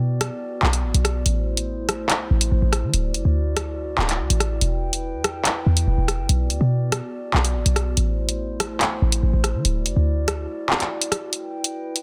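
A half-time drill groove from a longer hip hop piece, with bright electronic hi-hats, handclaps and rim clicks up front, pairs a punchy, tight 808-style bass with a fast attack and a noise layer against ethereal, glassy glass harmonica chords that beat softly through Bm, Am, Dadd9 and Em, casting an ominous, menacing mood in a dry, dense, heavily limited mix until the kick and bass drop out at 10.5 seconds ahead of a brief break from 11.3 seconds.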